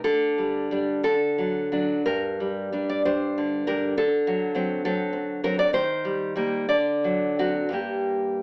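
In a rubato 6/8 lilt, this intimate, passionate romantic excerpt for solo nylon-string guitar features deep, fingerpicked classical tone with audible finger squeaks, played up front with a slapback echo and moderate studio reverb, all filtered through an AM-radio sound as the chords move from Dsus4 and D through Gm, D7 and Eb before settling back on Gm at 7.7 seconds.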